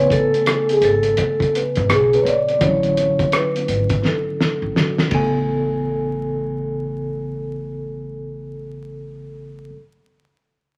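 A mellow, ringing vibraphone with slow motor vibrato carries the melody over a worn, slightly out-of-tune tine electric piano and a woody, thumpy pizzicato upright bass in this smooth, relaxed jazz-hop excerpt at 84 BPM in A major, swung on the 16ths and framed by vinyl crackle and a large studio reverb. A muffled, gritty cloth-damped drum kit sits up front with a fat snare, tight kick and dark cymbals, playing a fill from 4.0 seconds before it stops at 5.3 seconds. The harmony moves from Amaj9 to Dmaj9 and back to Amaj9, with the vibraphone, piano and bass carrying on alone to the end.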